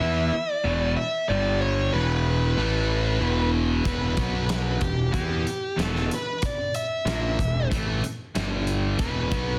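Aggressive and menacing, this hard rock excerpt moves at 94 BPM in a straight 4/4, centred on E minor and tuned slightly flat to A4 = 435 Hz. A dark, distorted lead guitar carries the melody up front, picked with a bluesy edge and given a slapback echo. Beneath it, two bright, cranked stack guitars drive through the riff with overdrive, one coloured by a phaser and the other sitting in the background. A growly, fuzz-laden picked bass sits up front, anchoring the low end. The big acoustic drum kit arrives at 3.9 seconds with a fat snare, a tight, softly clipped kick and a rolled-off top, mid-forward and close in the mix. Light reverb and small room ambience frame a dense, heavily limited modern master, as the harmony moves through E5, G5, A5 and B5 power chords, passes through E minor, and returns to E5 by way of G5.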